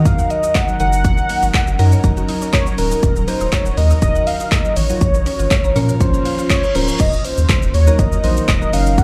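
A velvety, detuned synth lead carries the melody over a saturated sub bass and a deep house drum kit with a deep kick and woody snare in this confident, energetic dance-pop excerpt at 121 BPM in Eb dorian. Soft electric-piano-like keys with tremolo join them, along with an ethereal pad and a mallet-like pluck arpeggio in the background. The pad, pluck and bass pump to the sidechain, and everything is heard through a club PA, before a reverse cymbal at 6.3 seconds leads to an impact at 7.0 seconds.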